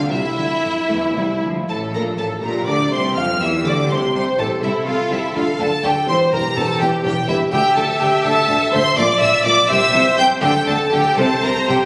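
The excerpt opens at once with the full string orchestra, a cheerful, graceful classical-period movement in F major, moving quickly in a lilting 6/8 at 82 BPM by the dotted quarter, though the pulse bends with a free rubato. An up-front, focused first violin section carries the melody high in its range, while a second violin line adds lush, expressive bowing beneath it and a close, even viola section fills in the accompaniment with smooth vibrato. Underneath, a distant cello section and a clear double bass section supply a smooth, lush bass. After a brief opening phrase, the harmony drops away for a moment at 1.7 seconds, then moves through F, Fmaj7 and a diminished colour before settling toward Bb, C and a closing Am7 near 11.2 seconds. The sound sits in a reverberant concert-hall ambience, captured by a phone in the room, giving the studio-polished strings a spacious, slightly distant halo.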